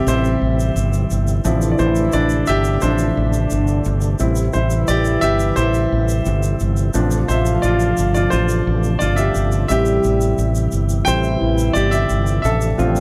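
A clear, polished baby grand piano opens this dramatic, bittersweet piano-driven pop excerpt at 87 BPM in a straight 4/4, taking the solo over a dark, distant French horn section playing a second line and a smooth tonewheel organ holding sustained chords in the background with chorus vibrato, key click and a stopped rotary speaker. From 0.1 seconds a direct, up-front fretless electric bass and a grainy egg shaker join as the harmony moves between C and Dm7. The dry, close 1970s-style studio sound sits in a small room, keeping the piano and bass present while the horns feel roomy and far off.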